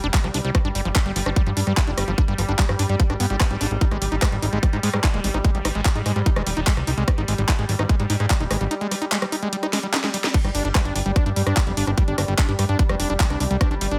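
A digital ambience surrounds this intense, hypnotic psychedelic trance passage at 147 BPM, where an up-front, overdriven electronic kick and a layered garage drum kit with a cracking snare, handclaps, hi-hat, rim clicks and crash cymbal drive a straight 4/4 pulse, broken by a drum fill at 9.7 seconds. A fat, detuned, wave-folded analog bass sits up front under a squelchy, gritty acid bass riff, its resonant filter plucks smeared with distortion, cassette tape colour, delay and sidechain pumping. Deep in the background, a bubbling stepped-filter texture holds chorused, reverberant sawtooth chords that move from G5 to Ab5 and back, also pumping against the kick.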